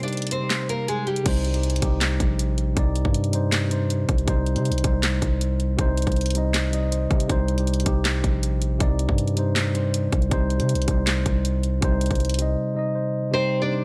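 Melancholic and eerie, this half-time trap excerpt at 159 BPM in C minor opens with a filter sweep over a fingerpicked, full-bodied nylon-string guitar melody, softened by a low-pass filter and digital delay, beside a clean, mellow tine electric piano heard through built-in speakers and an electronic trap kit of hard-clipped kick, sharp snare, bright hi-hats, handclaps and crash cymbal, re-recorded in a small room and placed up front. At 1.3 seconds a deep, sine-toned 808-style bass with a fast attack arrives under the drums. The drums and bass drop out around 12.5 seconds for a brief break, leaving the electric piano, and the guitar returns at 13.3 seconds in a dry, close mix.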